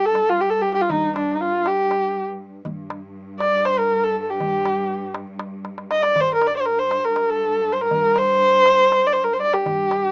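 A bowed kamancheh sings the melody up front from the start, its single voice expressive and smooth on top, shaded with vibrato and portamento, while a lush cello section holds a low drone beneath it and a small, high darbuka of clay and natural skin taps along under soft hands. This Turkish makam ensemble piece moves in a straight 7/8, and its longing, melancholic mood comes mostly from the kamancheh's aching line. The cello section sounds rich, focused and close, its bowed vibrato giving the drone a studio sheen. At 0.9 seconds a woody, thumpy upright bass joins in the background, plucked on gut strings with a dark acoustic tone. The darbuka stays dry and intimate, breaking into a brief fill from 5.7 to 6.2 seconds. Light reverb sits over a rough home-demo mix with a small-speaker sound, and the passage is cut from a longer performance.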